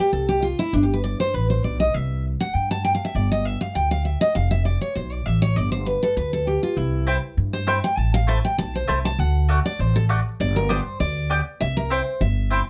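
Bluegrass at a brisk 199 BPM in C major, this short clip cut from a longer piece has a rustic, joyful mood and a light swing on the eighth notes. A picked steel-string dreadnought guitar carries the lead from the first moment, its tone bright and full-bodied, with finger squeak audible through close, detailed microphones. Underneath, a pizzicato upright bass with steel strings sits up front, woody and growly, anchoring the changes that move through G, C, F, Am and D. At 7.1 seconds a mandolin joins with stabs, its double strings giving a warm, woody, picked tone. Light reverb keeps the acoustic trio intimate and present.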